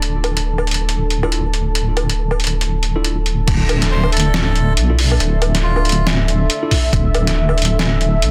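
Deep dubstep at 139 BPM in D minor, this short, cavernous and meditative cut moves in a half-time 4/4 with a swung sixteenth-note feel. A dark analog pad holds sustained chords throughout, its detuned sawtooth and triangle layers, sub octave, slow attack and long release giving it a moody depth, while an up-front wobbling bass built from sawtooth and sine tones sits low and thick under chorus. A gritty, pitched-down trip hop drum kit with a medium-tuned snare, hi-hat, crash and woodblock is overdriven and pushed forward. A clean tine electric piano enters at 1.2 seconds with background stabs through dub echo and a filter sweep, before the drop at 3.5 seconds brings in thumpy, overdriven hits from an electronic kick drum as the harmony moves from D5 to Dsus2. A reedy, breathy melodica melody arrives at 3.9 seconds, carried through dub echo, all within a dry, dense and heavily limited modern master.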